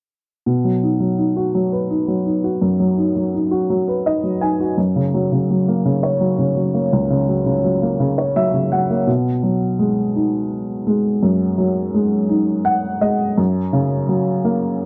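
A worn, woody upright piano, slightly detuned and sitting up front, carries this short pop excerpt on its own from 0.5 to 14.9 seconds. The mood is romantic and tender, moving in an unhurried, lilting 6/8 with a straight feel. The piano plays accompaniment across a broad span from low bass notes up into the upper middle of the keyboard, circling chords of B, F#, and a B6 that colors the second section, which begins at 9.1 seconds. Short piano fills appear at 3.7, 8.0 and 12.3 seconds. The sound is dry and close, with little reverb, like an intimate 1970s-style studio session.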